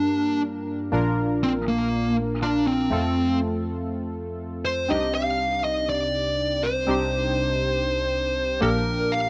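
Pop excerpt with a glossy, romantic mood and a lightly swung 4/4 feel, where a dark, picked fuzz lead guitar carries the melody up front over round, airy analog keys with detuned sawtooth tones, chorus and a filter sweep, moving from Gm through Bb and F to a Cmadd9 at 4.9 seconds in a dry, close 1970s-style studio sound with light reverb.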